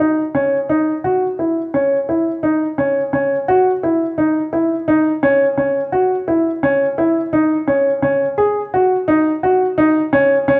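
A baby grand piano opens the recording on its own, close and up front, with a warm, natural tone. This short, restless cut from a longer contemporary instrumental piece moves in an uneven 7/8 metre with a straight feel, which gives it an urgent edge. The piano stays in a tight middle register between C#4 and G#4, so the line feels compact and insistent. A brief opening gives way to a new section at 1.0 s, which carries on until the piano stops at 10.6 s. Light reverb and a dark production surround the instrument, keeping the sound intimate and shadowed.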